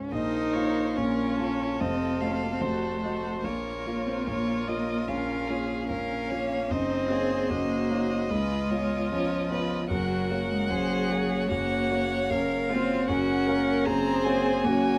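A bowed violin with a rich, smooth tone and vibrato carries the lyrical melody in this slow romantic movement for piano quintet, cut from a longer piece, in Bb minor at 74 BPM in 4/4 with a rubato feel. A clear, focused second violin and an even-toned cello shape supporting lines, while a distant viola adds soft-attacked, expressive portamento. An intimate, polished concert grand sits up front with deep bass and audible action noise, moving from Bbm through F7b9, Gb6 and Db7 to Gbmaj7 in a detailed, close recording with light reverb.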